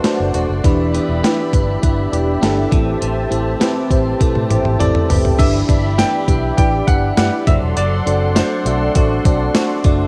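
Soaked in lush hall reverb with the character of a cassette home recording, this uplifting, nostalgic 1980s-style pop excerpt rides a thumpy 12-bit drum machine and a round, foam-muted fingered bass under a dreamy FM electric piano with chorus, a brassy detuned analog pad, and a scooped, compressed clean guitar riff with analog delay tucked in the background, while a drum fill at 4.2 seconds leads into a brilliant grand piano melody that enters at 4.8 seconds.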